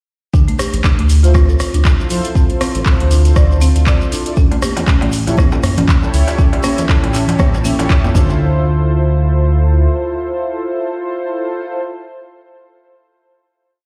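A deep, up-front four-on-the-floor kick drives this hypnotic, spiritual afro house piece in D minor at 119 BPM, joined from 0.3 seconds by a dark sawtooth synth bass riff, a buzzing hard-mallet marimba step sequence pumping with digital delay and grainy shekere sixteenths, with programmed metallic hats, claps and rim clicks from an afro-pop kit arriving at 0.5 seconds. Mellow, detuned synth brass stabs with chorus and filter sweeps enter at 1.2 seconds over Dm7 and A7. Ringing high-tuned interlocking congas and a saturated clay darbuka cross rhythm join from about 4.5 seconds, and the brass lingers into a final hit in a stone room echo until 11.8 seconds.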